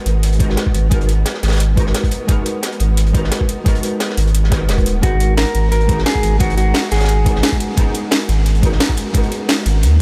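A round, sine-like sub bass sits up front in this dreamy liquid drum and bass excerpt at 175 BPM, held on a G#m9 chord beneath a clean, fingered hollow-body jazz guitar with ensemble chorus and tape echo, a thumpy, compressed electronic kick, an overdriven layered kit with cracking snare and bright hats, a dark, rolled-off breakbeat kit with a high-tuned snare, and a mellow electric guitar melody carrying 12-bit sampler grit and delay from 5.0 to 7.6 s, set in a light small-room reverb.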